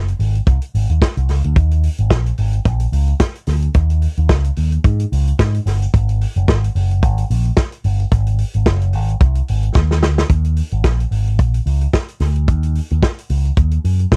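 A driving 4/4 disco groove at 110 BPM swings its sixteenths lightly at 56%, setting a sultry mood in Eb dorian on this cut from a longer piece. Up front, a picked electric bass runs through an envelope filter with an amped, warm tone, while an acoustic soul drum kit of hi-hat, tight kick and medium-tuned snare sounds dry and mid-forward with a rolled-off top. A drum fill at 9.8 seconds leads into a new section at 10.3 seconds, all captured in a close, 1970s-style studio sound with little reverb.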